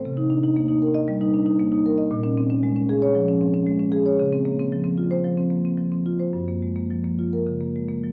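The rhythm sways in a loose, rubato 4/4 with uneven beats, giving this short fragment of a contemporary classical piece for solo marimba a flowing, hypnotic drift. The marimba, played with soft mallets, sits up front with a woody, round and airy tone, moving through Cm9, Bbm7, Dbmaj7 and Gbmaj7 across its 8.1 seconds. A wet concert hall reverb surrounds it, while worn cassette tape adds a warbling pitch drift and a dulled top end.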